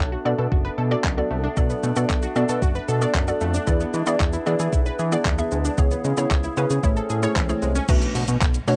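Dance-pop with a bittersweet, energetic mood, this short cut opens on a hollow, bouncy square-wave pluck and a glossy, up-front chorused synth bass, with a distant, roomy woodwind section holding sustained chords in the background and a round analog pluck spinning arpeggios through chorus and analog delay. A clean 12-bit drum machine with a thumpy kick, handclaps, hi-hat, shaker and crash enters at 0.5 seconds. Sidechain pumping drives the synths, bass and woodwinds, while cassette-tape colour lends the plucks, woodwinds and drums a retro, home-recorded feel in light reverb. Over a Bm7 to E7, C#m7 and Amaj7 progression, a very quiet electronic swell rises from 7.0 seconds into an impact at 7.9 seconds as the harmony returns to Bm7.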